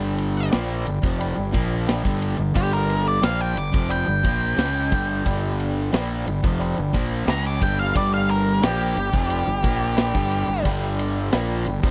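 A dark, octave-fuzz lead guitar solo with slapback echo swaggers up front through this sunny classic rock excerpt until 10.6 seconds, driven by a punchy fuzz-overdriven fingered bass and a big acoustic rock kit of kick, snare and ride that kicks in at 0.2 seconds, while a crunchy overdriven guitar, a scooped, compressed distorted guitar and a reedy electric piano with tremolo fill the background of the dry, close 1970s-style studio sound.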